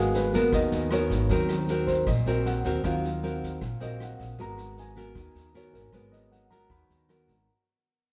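A natural-toned baby grand piano solos across this melancholic, intimate bossa nova fragment at 155 BPM, over a full-bodied, fingerpicked nylon-string guitar sitting up front with audible finger squeak, a woody pizzicato upright bass and a vintage drum kit of punchy kick, rim click and medium-tuned snare with a rolled-off top, the harmony moving between Abm9 and Ebm6 as the passage fades out in a moderate echo chamber heard from further back in the room.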